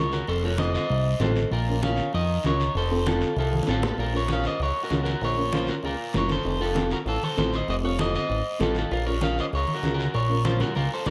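A bright, slightly broken-up electric guitar carries the melody up front with spring reverb and slapback echo in this passionate, danceable cumbia cut from a longer piece at 195 BPM in Bb harmonic minor, over a fat sawtooth analog bass with a moving notch, a dark, woody, slightly detuned upright piano in accompaniment, raspy guiro from 0.1 seconds and distant, damped, low-tuned congas struck with hard hands from 0.4 seconds, the whole caught by close, detailed microphones with light reverb.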